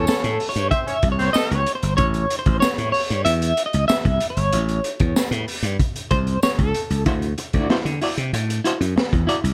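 A brief, warm horn section with light vibrato, set back in a roomy space, opens this gritty funk excerpt alongside a clean electric guitar solo, and the horns fall away at 1.6 seconds. Underneath, a bright, growly slap bass sits up front with a punchy, direct-amped tone, while a fingered electric guitar at the edge of break-up plays accompaniment with a pulsing tremolo. A saturated, dark breakbeat kit of hi-hat, kick and snare drives the straight groove, its high-tuned snare and tight kick kept close and its top end rolled off. A jingly tambourine adds a faint small-room shimmer until 6.6 seconds. At 7.1 seconds the solo ends and the harmony shifts from A to D9 as a new section begins, all in a dry, close-sounding mix.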